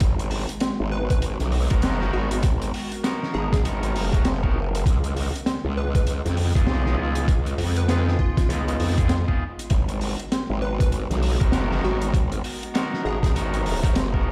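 A warbly, nostalgic tape-like pad with phaser and 12-bit sampler texture opens alongside a growling, wobbling bass, a thumpy pitched-down kick up front and a crunchy, dark breakbeat kit with a high-tuned snare and hi-hat, setting a playful, gritty glitch hop groove at 99 BPM with swung 16ths in G# dorian over G#m9 and C#7 chords, as a punchy, detuned square-wave lead with delay slips in at 0.9 s in the background and a twangy, slightly broken-up electric guitar adds pumping stabs from 1.7 s, the whole short cut from a longer piece sitting in a big, bare-room studio reverb.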